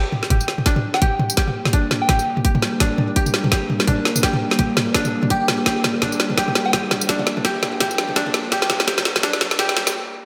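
Half-time drum and bass at 168 BPM in G minor, heavy and cinematic, built as a single rising build-up over a Gm chord, with a drum fill and filter sweeps running throughout until a brief break at 9.9 seconds. Up-front electronic drums with a woody snare, bright hats, tambourine and toms carry gated reverb over a tight layered kick, while a dry, woody koto plays filtered arpeggios with digital delay and a tense, detuned sawtooth string-like drone enters at 1.3 seconds with slow-attack sustained chords, vibrato and sidechain pumping. A soft, warbling FM bell sits in the background with chorus and delay, a very quiet riser sounds underneath, and the whole is bathed in lush hall reverb with bright 1980s-style digital production.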